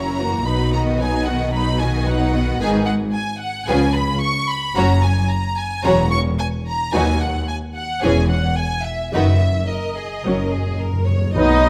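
Graceful and cheerful, this quick classical-period movement for symphony orchestra moves at 111 BPM in a straight 4/4, carried by a full string body: up-front, lush violins sing the melody over a second violin line, bowed violas with a smooth top, focused cellos and rich, even double basses, all with vibrato, while the harmony travels from B through G#m and C#7 to a close on F#. Timpani played with medium mallets enter in the background at 10.2 s with a fill. At 11.4 s the winds and brass join for a brief moment before the excerpt is cut: an airy flute, a very quiet oboe and bassoon, a vintage-toned clarinet, distant horn chords and dark trumpet stabs, all set in a moderate recital-hall reverb.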